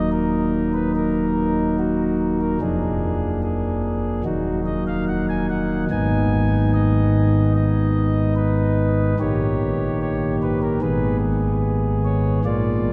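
A chamber organ on a principal stop carries this solemn, grave chorale-style classical passage alone, its smooth voicing touched by chiff and placed up front, spanning from deep Eb1 to Ab5. At a steady 73 BPM in 4/4 in Eb minor, the harmony moves through Ebm, Bb7/F, Abm and Eb7/Bb before settling back on Abm. A wet cathedral reverb with a 6.4-second decay surrounds the organ, and the 12.9-second passage is cut from a longer piece.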